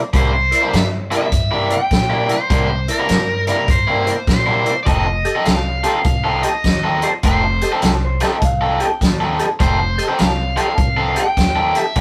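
Electric blues shuffle at 102 BPM, rollicking and swaggering, cut from a longer piece and moving from C7 to F7 at 4.9 seconds. A bright, overdriven garage guitar riff sits up front, while an overdriven lead guitar with spring reverb carries the melody over a gritty tonewheel organ with percussive attack, slow rotary speaker and chorus vibrato, woody, thumpy pizzicato upright bass on gut strings, and a vintage kit with a fat snare and punchy kick. From 7.8 to 9.5 seconds a lo-fi, slightly broken-up guitar through a small old amp adds a compressed second line, all in a rough rehearsal-room recording with moderate booth ambience.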